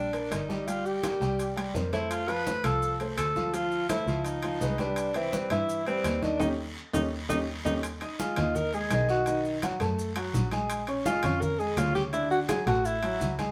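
Afro-Cuban jazz in a sunny, lively 168 BPM groove, where a bright alto saxophone with light vibrato and scooped notes carries the melody up front over an intimate concert grand piano with audible action noise and long sustain, a dark bowed double bass with portamento, background congas, ringing metal-shell timbales and grainy maracas, and a raspy guiro, all in moderate studio reverb, with a band accent arriving at 6.4 seconds and a drum fill at 6.9 seconds just before the second section begins at 7.8 seconds.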